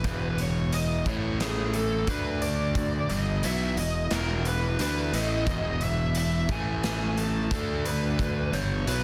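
Bittersweet and restless, this short cut from a longer piece of quiet-loud alternative rock moves in a straight 4/4 with a half-time feel. An up-front, overdriven semi-hollow guitar carries the main riff with a hollow-bodied warmth, while a growly, fuzzed fingered electric bass sits beneath it. A dark, distorted lead guitar with a bluesy edge plays the melody above, and an electric guitar through a small old amp adds very quiet, slightly broken-up, compressed arpeggios. The raw garage drum kit of hi-hat, punchy kick and medium-tuned snare sounds saturated and gritty, set in a bright stone room that pumps. The power chords cycle through E5, A5 and D5, and the whole excerpt arrives as a dense, heavily limited modern master with small room ambience.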